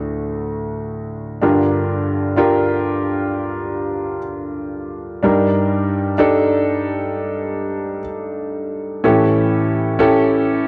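An intimate concert grand piano, close and up front with audible action noise and deep bass, carries this melancholic, longing pop fragment alone, its cassette-tape color and moderate spring reverb giving a homespun feel as the harmony moves from D through Gm7 and Ebmaj7/G to A7 at 9.0 seconds.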